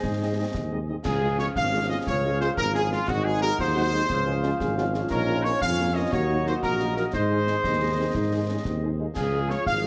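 A spirited, proud military-style march for wind band in a straight 6/8, with a clear, distant trumpet section carrying the melody up front over a mellow, smooth-topped tuba bass and a snare drum, bass drum and dark-sounding clash cymbals. Warm euphonium and a close-miked woodwind section with analog delay fill the second line, French horns add soft-attack accompaniment in the background, a dark, very quiet trombone section sustains chords from 1.0 s, and a pure wooden piccolo appears only briefly at the opening. The cut from a longer piece carries the sound of cassette tape, with light reverb and small room ambience.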